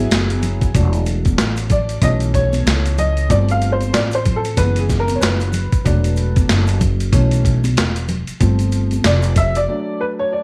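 A dark, worn upright piano leads this relaxed, smooth jazz-hop excerpt at 94 BPM with a 16th-note swing feel, its boxy, slightly detuned tone, audible action noise and long sustain carrying a solo over drifting ninth suspended chords from 0.7 seconds. Up front beside it, a woody pizzicato upright bass and a gritty, compressed boom bap sampler kit with a thumpy kick and high-tuned snare hold the groove, while a bright tube shaker and hard-hand congas sit in the background. At 9.7 seconds the other parts drop away, leaving the piano alone on a rootless Bm9/F# until 10.4 seconds, all under a studio reverb.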